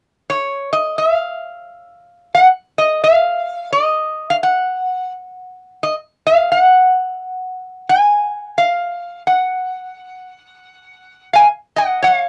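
A home cassette recording with a short, wet booth ambience gives this brief Hawaiian excerpt a lo-fi, intimate sound. A lone metal-body resonator slide guitar carries the whole passage from 0.3 to 12.3 seconds, sitting up front in the mix with a metallic, nasal tone colored by the tape. Played with fingerpicks and a slide, the acoustic resonator stays in a high register between C#5 and G#5. The tempo is an easy 87 BPM in 4/4, with swung eighth notes that give the line a lilting, unhurried feel. The mood is relaxed and sunny, like a lazy afternoon taken from a longer piece.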